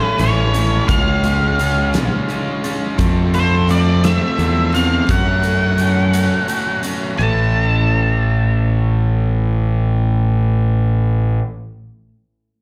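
In a slow 6/8 lilt at 57 BPM, this restless, anthemic stretch of quiet-loud alternative rock in A major moves through A, C#, F and F#m before returning to A at 7.2 s, heard as a live gig through the venue's PA with club reverb in a small room. A dark, up-front octave-fuzz lead guitar carries the melody with slapback and tape echo, while a crunchy, warm overdriven guitar plays a picked riff and a bright dreadnought acoustic with fresh strings picks full-bodied arpeggios in the background. A growly fuzz bass sits punchy and forward, and a huge arena drum kit with a pumping hall sound, medium-tuned snare and hard-hitting kick drives from 0.2 s until it drops out at 7.0 s.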